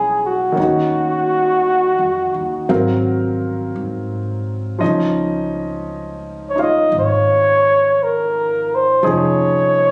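Captured on a phone in a room with a moderate, large-studio reverb and a club-like ambience, this tender, intimate jazz ballad swings gently in 4/4 and is cut from a longer piece. A mellow flugelhorn with vibrato and a smooth top carries the melody up front, bathed in plate reverb, while a clear grand piano accompanies close by, its hammer action audible, through chords moving from Emaj7 to Ebm9, Ab13 and Dbadd9. Beneath them, a woody, dark pizzicato upright bass on steel strings supplies the low end throughout all 9.9 seconds.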